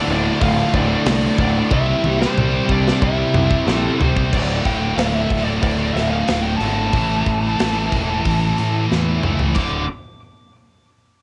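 A dry, cassette-saturated home recording carries this dark, epic heavy metal fragment at 92 BPM in a straight 4/4. The distorted lead guitar sings a high melody from A4 to D6 over a very quiet second lead line that stops at 4.0 seconds. The scooped high-gain guitar sits up front with a background distorted riff guitar, while a faint double-tracked, compressed fuzz guitar drops out at 4.3 seconds. A growling overdriven fingered bass supports the guitars, and a tight, polished drum kit with bright cymbals and airy room sound plays fills at 1.7 and 8.9 seconds, all moving through D5, C and A5 chords.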